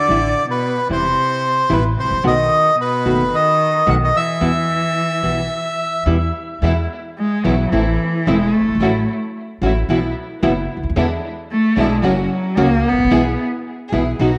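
A reedy, dark bandoneon carries the melody up front with tape echo until 6.0 seconds in this dramatic, tense tango fragment from a longer piece. It moves at 111 BPM in 4/4 with a rubato feel, beginning in E minor and turning to E major at 6.6 seconds. Beneath it, a warm, bowed cello played by one player carries a second line with vibrato, portamento, a soft attack and a smooth top, then takes a solo when the key brightens, continuing until 13.4 seconds. A classical nylon-string guitar, fingerpicked and shadowy, accompanies with audible finger squeak, and a woody, thumpy pizzicato upright bass on steel strings anchors the low end. From the key change, a rich chamber string section adds focused, bowed stabs with vibrato and tape echo. The whole piece sits in a wet spring reverb and small room ambience.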